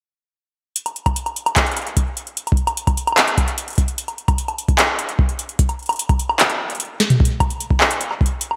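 Intricate and melancholic, this IDM fragment cut from a longer piece sets a booming, overdriven analog drum machine (crisp gated snare, metallic hi-hats, handclaps, toms and woodblock) up front against a deep electronic kick, which drops out from 6.4 to 7.2 seconds while a drum fill at 7.0 seconds leads into a new section, all framed by a lush hall reverb and bright 1980s-style digital production.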